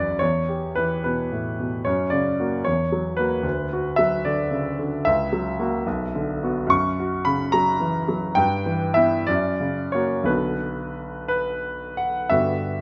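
A classical romantic character piece for solo piano in B minor, this bittersweet and stormy fragment of a longer work moves in a flexible, rubato 6/8 at roughly 56-76 BPM counted in dotted quarters. The grand piano sounds clear and up front, spanning B1 to C#6 and ringing into a moderate recital hall reverb. Its harmony circles through E minor and F-sharp dominant colours back to B minor, settling on the tonic at 10.3 seconds.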